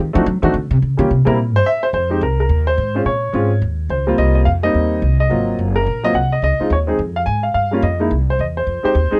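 A woody, growly upright bass, plucked on steel strings and sitting up front, takes a solo in the first 1.9 seconds of this moody, smoky swing jazz fragment in F minor at a brisk 214 BPM. A clear, present grand piano carries the melody over chords such as Fm7, Bbm7, Eb13 and Ab13 as the piece moves into a new section at 1.9 seconds. The sound is dry and close, like a 1970s studio recording, and the passage is cut from a longer piece.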